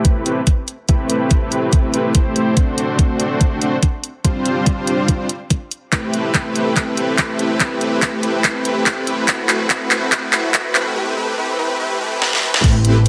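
A huge, detuned supersaw carries the riff through this dreamy, emotional future bass build-up, its dense unison voices pumping against the sidechain while a low-pass filter sweeps across the build-up and tape echo trails behind. The track runs at 143 BPM in 4/4 with a half-time feel and a light swing on the 16ths, settling in A minor as the chords move from Am9 to D7 and G7sus4, then back through Am9 and Am69. Up-front, overdriven electronic drums drive the rise: a knocking kick sits under a pop kit of crash cymbal, handclaps, hi-hat and a deep snare, with drum fills from 5.9 seconds. A break begins at 11.0 seconds, and at 12.6 seconds a fat, mellow analog bass lands on a low A, pumping with the sidechain. A moderate digital room reverb of about 0.9 seconds gives the dense mix some air in this short cut from a longer piece.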